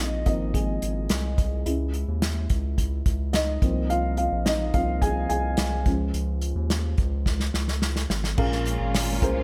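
A dark, woody upright piano with audible action noise leads this uplifting piano-driven pop excerpt in Ab major at 107 BPM, backed by a round, deep analog bass and an airy acoustic drum kit with a tight kick, played with bundle sticks, that adds a fill at 7.3 seconds, before a bowed string section with vibrato enters on a Bbm7 chord at 8.4 seconds, set in light studio reverb.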